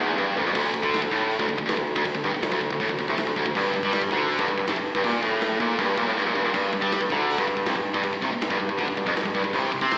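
A straight 4/4 pulse at 160 BPM drives this epic, aggressive heavy metal piece, cut from a longer work, where a big, natural-sounding acoustic rock kit with a punchy kick, medium-tuned snare, toms and crash cymbal opens with a fill at 0.2 seconds and adds another at 6.2 seconds, under an up-front, double-tracked, high-gain electric guitar riff, bright and picked with slapback echo, moving from Dm to D5 and then G5 at 3.6 seconds, while a bright, up-front baritone saxophone with pop-style vibrato carries the bass line, all with little reverb yet the feel of a live gig through a venue PA, touched by recital-hall ambience and an AM-radio sound.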